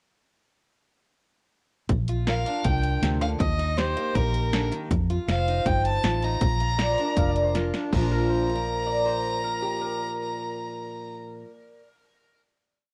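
A clear, biting fiddle carries the tune from 2.3 seconds, its light vibrato and earthy bowing giving this short honky-tonk and classic country piece a nostalgic, easygoing character. Beneath it, a bright steel-string acoustic guitar with fresh strings plays fingerstyle accompaniment with an alternating, palm-damped thumb, while a dark, foam-muted electric bass holds a two-beat root-and-fifth line with walk-ups. A dry, punchy analog drum machine keeps a country two groove and drops out at 8.0 seconds after a short fill. At 6.8 seconds a metallic, nasal lap resonator guitar, played with fingerpicks and slide, enters with answering blues licks and carries on over the final chord. The whole track sits in light reverb and has a worn, old cassette tape quality with warbly pitch drift.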